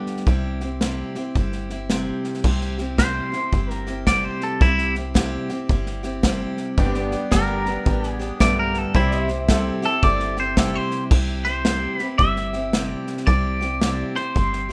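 A twangy, compressed electric guitar with a phaser takes the lead from 3.0 s, bright and up front in this sunny, heartfelt honky-tonk country excerpt in C major, swinging at 111 BPM. A bright picked dreadnought acoustic guitar, a punchy, airy studio drum kit and a tight, nasal sawtooth sequencer bass drive the accompaniment. From 6.8 s to about 11 s, a woody upright piano with audible action noise fills in the accompaniment while a pedal steel guitar with fingerpicked slide and volume swells adds sustained chords, both in the background under light reverb.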